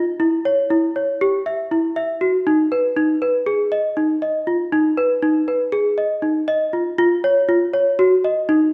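Contemporary instrumental music, urgent and restless, moving at 239 BPM in eighths through a straight 9/8 with tuning set to A4 = 439 Hz. A worn celesta plays alone from 0.0 to 8.6 s between D#4 and E5, its bell-like, delicate, sweet tone struck by hard felt hammers, slightly out of tune and placed up front. A wet recital hall reverb surrounds it, and at 7.0 s the passage turns to a new section shortly before this fragment of a longer piece cuts off.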